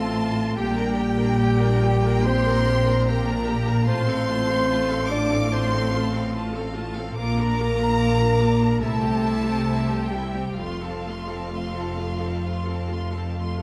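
This is a slow, romantic classical movement for symphony orchestra in F major, a brief lyrical passage taken from a longer work, moving at 72 BPM in 4/4 with a rubato, uneven pulse. A chamber violin section carries the melody high above the ensemble, its bowed tone clear and focused with vibrato, while a second violin section adds an expressive, close counterline in the same high register. A dark, distant solo clarinet weaves another second line in the middle register as violas fill in a smooth, even accompaniment from further back. Mellow French horns hold sustained chords, and bowed double basses and a lush symphonic cello section, sitting in the background, anchor the bass through the harmony from F/A and Gm/Bb to Bb, C and home to F at 10.6 seconds. A wet scoring-stage reverb wraps the orchestra in a warm glow across the full 13.6 seconds.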